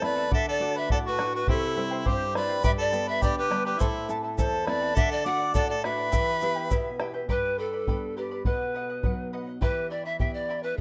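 Andean folk played by a small ensemble, this wistful, earthy excerpt moves at 103 BPM in a straight 2/4 in E minor, cut from a longer piece. A bright, airy pan flute carries the melody throughout, its tongued notes showing a woody chiff and an unsteady vibrato, while a warm harmonica with light vibrato and a smooth top sits up front as a second line until 7.0 seconds. Underneath, a fingerpicked charango adds a shimmering double-string sparkle, some strings doubled at the octave, and a fingerpicked nylon-string guitar in classical style fills out the lower register. A deep, dark bombo sits up front and anchors the rhythm, and a grainy, close and dry egg shaker joins between 2.6 and 6.8 seconds. The harmony moves from D through C, G, Am and back to D and Em, then shifts at 7.3 seconds into a second section of G, B and Em, all set in light reverb and small-room ambience with a rough home-demo character.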